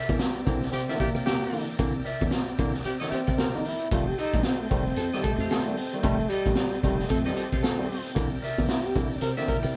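Light reverb and the feel of a band playing live in one room frame this short funk cut, an energetic, funky groove at 113 BPM in 4/4 with swung 16ths, set in C mixolydian and tuned to A4 = 436 Hz. Up front, a crunchy breakbeat kit with a high-tuned snare and tight kick sounds saturated with a rolled-off top, while a slap bass through an envelope filter growls and punches beneath it. A dark trombone carries the melody as soloist from 0.2 seconds, with light vibrato and scooped notes, and a raspy, breathy tenor saxophone plays a second line from 0.7 seconds. A barky tine electric piano, lightly overdriven through a combo amp, adds stabs, a clean, twangy electric guitar with harmonic tremolo accompanies, and an overdriven tonewheel organ shouts sustained chords through a slow rotary speaker in the background. A jingly tambourine sits close and dry behind the band until 8.8 seconds, as the harmony moves from C9 to F9 and back to C9.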